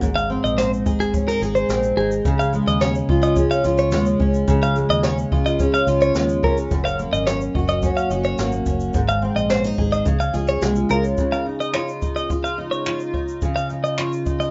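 A rough home-demo mix in a small room, its top end dulled, carries this carefree, sunny acoustic pop excerpt in a straight four. An up-front, full-bodied jumbo steel-string acoustic guitar, double-tracked with plate reverb and showing finger squeak, picks the accompaniment beside a bright, twangy twelve-string electric guitar picking compressed arpeggios through digital delay and plate reverb, while a brushed jazz kit with a high-tuned snare, boomy kick, shaker and finger snaps keeps time. A dark, foam-muted vintage electric bass rounds out the low end until 11.1 s, and a ringing vibraphone with its motor off adds a second line from 1.6 s, returning briefly at 10.3 s just before the harmony settles onto a Dbadd9 in the closing section.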